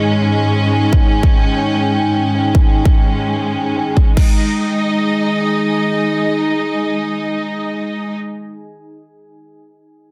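A dense, heavily limited mix in a moderate digital room carries this heavy, chaotic half-time wobble dubstep clip at 148 BPM, where an up-front symphonic string section holds clear, intense sustained chords with light vibrato and sidechain pumping over a deep, moody sawtooth pad with chorus and a slow attack, while a punchy, overdriven electronic kick enters at 0.9 seconds beside a background kit of metallic hats and crash cymbal, both stopping at 4.3 seconds.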